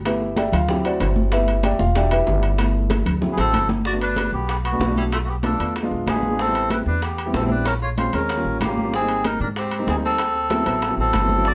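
A warm, intimate grand piano with audible action noise opens this sunny, sophisticated Afro-Cuban jazz excerpt in G major at 190 BPM alongside a woody, thumpy pizzicato upright bass up front. Congas and high-tuned bongos sit in the background, while ringing, saturated timbales add metallic colour. A drum fill at 3.2 seconds leads to the entrance of a reedy, breathy melodica carrying the melody, with a clear tenor saxophone with light vibrato adding a distant second line. The harmony moves into richer territory from 3.9 seconds, shifting through chords such as Bm7b5, E7b9 and Abmaj7 before landing on D13, all heard in a lightly reverberant room where the band plays live together.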